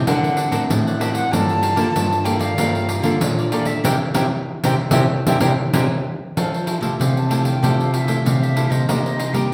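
Joyful and lively, this samba and choro passage, cut from a longer piece, moves at 95 BPM in F major, with a distant, airy wooden flute carrying the melody with vibrato and a soft attack. Two small-sounding, fingerpicked nylon-string guitars, one playing accompaniment and the other the bass line, sit alongside a crisp, picked cavaquinho in the background and a jingly pandeiro played with soft hands up front. The band hits accents from 3.8 to 6.4 seconds before a new section begins at 6.4 seconds, the group heard in the wet reverb of a recital hall.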